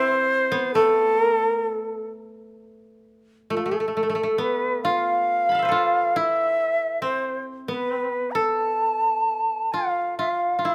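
Japanese chamber music in a free, rubato 2/4, this austere and still passage sets an airy, end-blown bamboo shakuhachi melody with vibrato and a crisp, chiffy attack over a mellow, woody koto second line plucked with fingerpicks, both held up front and closely detailed in a moderate recital-hall reverb, with the music moving into a new section at 2.6 seconds before the cut at 10.7 seconds.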